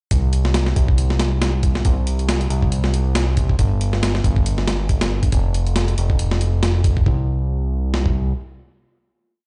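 Fat analog bass and a sampler-style breakbeat kit arrive together at 0.1 s, launching this short, swaggering, funky breakbeat piece straight into its drop. The drums are a compressed, gritty looped break with edits, built from a thumpy kick, a medium-tuned snare and hi-hat, sitting up front with a swung sixteenth-note feel. Beside them, the bass is thick and nasal, a detuned blend of sawtooth and square wave with a fast attack, holding long gliding notes in a low register. Both parts sound as if played over a big sound system in a bare stone room, with a hard-surfaced reverb and a top end that stays dull. After the drop gives way to a final note at 7.1 s, the drums end at 8.1 s and the bass lingers until 8.3 s.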